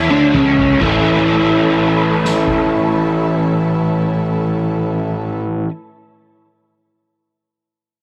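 Psychedelic rock with a trippy, dark mood, moving at a slow 63 BPM in a straight 4/4 in A major, heard as a short excerpt cut from a longer piece and tuned slightly below standard pitch. An overdriven electric guitar sits up front playing the riff from the start, its bright, scooped, double-tracked tone given a swirling character by a rotary speaker. Beneath it, a fuzz-laden picked electric bass holds down the low end with a round, dark sound. A rich studio string section sustains smooth, bowed chords with light vibrato, adding an even layer above the band. A soft-mallet drum kit sits in the background from 0.3 to 2.7 seconds, its boomy kick, medium-tuned snare, toms and dusky crash cymbal sounding soft and natural, with a drum fill opening the passage. A moderate spring reverb lends the whole mix a lingering sense of space.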